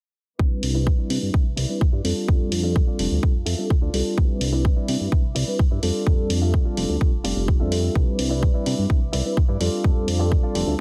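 A straight 4/4 groove at 127 BPM drives this funky, feel-good stretch of filtered disco house in C major, cut from a longer piece. A punchy, layered electronic kick sits up front from 0.4 seconds, and an analog-toned electronic hi-hat, re-recorded in a large room and pumping with sidechain, joins at 0.6 seconds. A fat, detuned sawtooth bass anchors the low end with sidechain pumping and a low-pass filter. The bell-like tine electric piano plays bright accompaniment through phaser, pumping and low-pass filtering as the harmony alternates between Cmaj9 and F6. In the background, a twangy, picked clean guitar recorded direct plays a riff coated in 12-bit sampler grit, also pumped and low-pass filtered, while a very quiet, distant violin section floats sustained, sul tasto chords. A filter sweep runs through the whole passage, and the mix carries a heavily compressed, radio-like sound from multiband compression and digital ambience.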